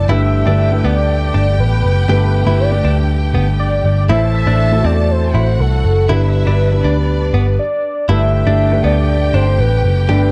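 A velvety synth lead carries the melody over mellow felt-muted upright piano, a lush bowed violin section and a round, foam-muted electric bass that sits up front, with a clean, direct-recorded electric guitar riff joining at 0.1 seconds. This anthemic, warm piano-driven pop moves at 120 BPM in G major through Gadd9, Am and G, with a brief stop from 7.6 to 8.1 seconds before the phrase returns on Gadd9. Chorus and plate reverb shade the lead, plate reverb also touches the piano and violins, and spring reverb colours the guitar in a dark, lightly reverberant production.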